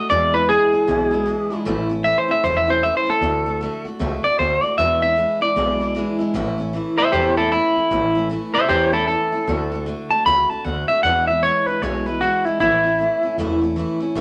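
Swung eighth notes drive this rockabilly excerpt at 154 BPM in 4/4, with an upbeat, rollicking feel in A major. A clean, picked electric guitar sits up front carrying the melody, moving into a solo at 1.7 seconds that runs to the end, though its own line stops at 13.4 seconds. Beneath it, a full-bodied steel-string acoustic guitar, picked in a dreadnought voice, supplies the accompaniment, while a pizzicato upright bass adds a woody, growly, thumpy low end from 0.1 seconds. The chords open on E7 before settling into a cycle of A, D and E7, returning to A near the close. A moderate club reverb gives the trio a club room sound, and the recording is cut from a longer piece.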